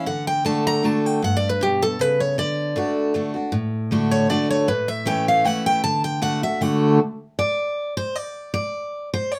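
Recorded up front in a modest small room, this rustic, joyful bluegrass excerpt in D major moves at a brisk 156 BPM in 3/4, with two full-bodied, picked dreadnought steel-string acoustic guitars: one carries the melody through a D, G and A progression until 6.9 seconds, while the other, warm with fresh strings, keeps up the accompaniment throughout and carries on by itself after the melody stops, until 9.4 seconds.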